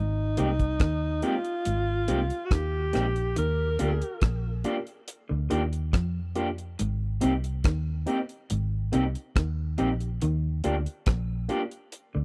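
A warm alto saxophone with vibrato and a smooth top opens this tender lovers rock reggae fragment, singing a pop-style solo melody up front through tape echo before falling away at 4.2 seconds. Beneath it, an electric guitar through a small old amp plays a dark, slightly broken-up picked riff, lo-fi and close, alongside a round, foam-muted vintage fingered bass that sits prominently in the mix. From 0.4 seconds a deep reggae drum kit, acoustic and dry with a tight kick, joins on hi-hat and rim click, together with a worn, slightly out-of-tune tine electric piano, lightly overdriven through its built-in speakers. A second electric guitar, placed in the background, adds picked stabs colored by tremolo. The smooth, straight 4/4 groove moves at an unhurried 70 BPM over alternating Abmaj7 and Ebmaj7 chords, captured in a close 1970s-style studio sound with a small room reverb, and it is cut from a longer piece.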